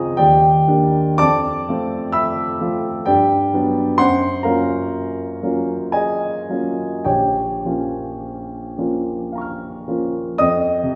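Impressionist classical solo piano in a wistful, nocturnal mood, this brief fragment of a longer piece unfolds in an unhurried, rubato triple metre as a warm, natural grand piano ranges across a sweep of lush extended chords, heard from further back in a recital hall whose wet reverb surrounds the instrument even as its tone stays up front.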